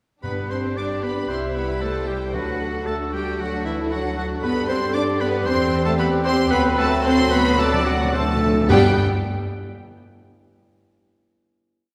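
A quick, graceful and lively classical-period movement for symphony orchestra in G major at 114 BPM opens with rich, lush violins carrying the melody over bright cellos and warm double basses, while a pure flute section and an oboe double the tune. A second violin section adds very quiet tremolo chords, and a distant clarinet, a dark bassoon and a mellow French horn section hold sustained chords in the background. Violas join at 1.3 s with a smooth counter-melody, and the timpani, struck with medium mallets on calf heads, play single strokes on bass notes before a rolling fill from 6.5 s leads to the closing G chord at 8.7 s, with the whole ensemble set back in a spacious scoring-stage reverb.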